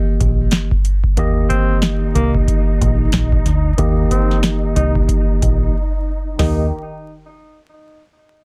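A worn, slightly out-of-tune tine electric piano with cassette-tape grit opens this soulful boom-bap hip-hop excerpt in Eb major at 92 BPM, joined at 0.2 seconds by an overdriven, booming analog drum machine with a deep kick, tonal snare and metallic hats up front and a round, foam-muted dub bass in the background, before lush bowed strings with expressive portamento arrive at 1.2 seconds and a breathy subtone tenor saxophone solo with scooped notes and digital delay enters at 1.5 seconds, all under a filter sweep, a brief break and vinyl crackle in a dense, heavily limited master.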